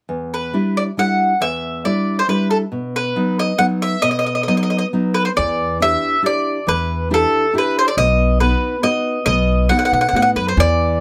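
Passionate and romantic, this Italian folk serenade moves in a straight 3/4 at 137 BPM in E minor, cut from a longer piece. A full-bodied nylon-string guitar opens at 0.1 seconds, fingerpicked in a classical manner with the occasional finger squeak audible. The mandolin carries the melody from 0.3 seconds, its picked double strings giving a woody, up-front voice that sits slightly above the accompaniment. At 5.4 seconds a pizzicato upright bass with gut strings joins, adding a thumpy low end as the music enters a new section. The harmony alternates between Em7 and B, and a light reverb gives the close, intimate trio a touch of space.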